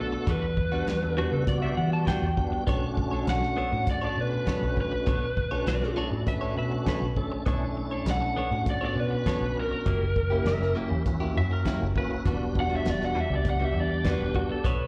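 Heard as a live club set through the venue's PA, with a light small-room reverb, this mournful, brooding straight-eighth soul blues is cut from a longer piece and moves through Em9, Bm9 and F#7b9. An overdriven lead guitar through a small cranked amp sits up front with slapback echo. A tonewheel organ fills beneath it through a slow rotary speaker with chorus vibrato, and a direct-recorded clean guitar adds compressed, phased stabs. A foam-muted, round and punchy fingered bass and a dry soul kit with a tight kick and rolled-off top anchor the groove, while a clean lap steel enters at 1.2 s with a dark, compressed slide second line through slapback and analog delay.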